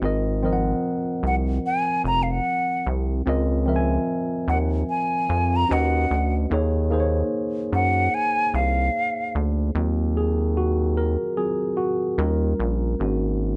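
The recording has a light reverb and a rolled-off top, giving this short cut from a longer neo-soul R&B piece an introspective, late-night hush. At a relaxed 74 BPM in 4/4, with a 16th-note swing, it sits in E-flat dorian. A worn, slightly out-of-tune tine electric piano carries the chords through a plate reverb, moving from Ab7 through Dbmaj7, Badd9 and Eb9sus4. Beneath it, a rubbery, bouncy square-wave bass with a wave-folded, resonant filter pluck holds the low end up front. An airy, close-miked concert flute with a hollow tone, crisp attack and vibrato enters at 1.3 seconds to sing the melody in its upper register, also bathed in plate reverb. At 9.7 seconds the flute has dropped out and the electric piano takes a solo over Ebm69 and Eb7, landing on Ab7sus4 as the cut ends.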